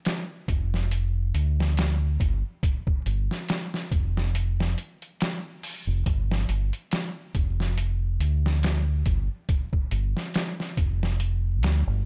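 A slow, lightly swung trip hop groove from a compressed, pitched-down sampler-style drum kit with a muffled, thumpy kick, medium-tuned snare and hi-hat in studio reverb sits up front beside a dark, round fingered electric bass entering at 0.5 seconds, while digital vinyl crackle adds a smoky, cinematic haze to this short cut from a longer piece.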